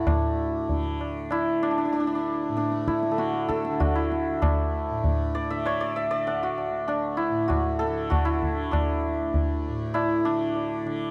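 Set in a 7/4 cycle at 97 BPM, this serene, devotional 11-second Hindustani classical fragment in raga hamsadhwani on D features an up-front, bright, shimmering santur melody with tape echo, a softly plucked, buzzing tanpura drone and low-tuned, short-ringing tabla entering at 0.1 seconds, all captured in a dry, close 1970s-style studio sound.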